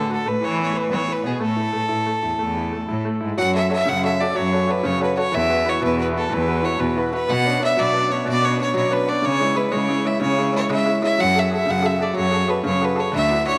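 Lively and bright, this Celtic slide in a straight-feel 12/8 features an earthy, up-front fiddle carrying the melody with light vibrato and a touch of tape echo, over a brilliant, woody upright piano that sounds worn and slightly detuned. A rich, bowed cello with an intense, smooth top holds the bass, while a very quiet, close studio string section sustains a drone only until 3.4 seconds, when the music turns toward a minor-leaning passage. The whole ensemble sits in a moderate echo-chamber reverb, and the clip is cut from a longer piece.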